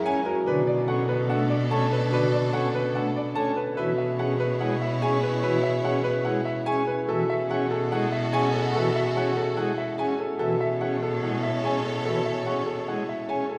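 Set in the long, wet reverb of a church, this hypnotic, urgent slice of minimalist classical pattern music moves at 145 BPM in a straight 4/4, in B dorian over Bm7, C#m7/B and F#m7/B. A clear, up-front baby grand piano carries the melody above marimba arpeggios struck with medium mallets, while a full principal-chorus pipe organ in romantic voicing supplies accompaniment. A rich, bowed studio violin section holds vibrato-laden sustained chords, and a single close, focused cello anchors the bass, all of them playing through the roughly 13.6 seconds heard here.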